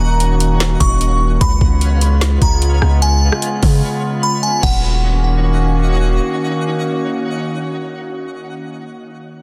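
Atmospheric cloud-rap hip hop at 149 BPM in a half-time feel, hazy and ethereal in Eb minor, moving from Ebm7 to Db7 and back. A warbling, nostalgic pad of detuned, wave-folded tone, with chorus, reverb and sidechain pumping, holds sustained chords over a deep, sine-like 808 bass. A delicate FM tine bell with phaser, tremolo and delay carries the melody above a faint, twinkling granular shimmer, while a smooth electronic R&B kit with knocking kick, woody soft-clipped snare and metallic hats enters at 0.2 seconds, mutes at 3.8 seconds and stops by 4.7 seconds, all within a dense, heavily limited digital master.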